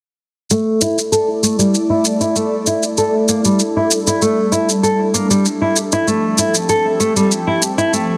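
A dense, heavily limited modern mix with light reverb and small room ambience frames this meditative, mystical organic downtempo excerpt at 97 BPM in 4/4 with a straight feel. Up front, a bright, fingerpicked nylon-string guitar plays classical arpeggios from 0.5 seconds, its finger squeaks audible through a low-pass filter sweep and digital delay, alongside an overdriven electronic shaker with studio reverb. From 1.3 seconds an ethereal, airy pad of detuned sawtooth and triangle unison voices, with slow attack and long release, sustains chords through ensemble chorus, phaser and built-in reverb as the harmony moves from Asus4 to Gm to Fmaj7.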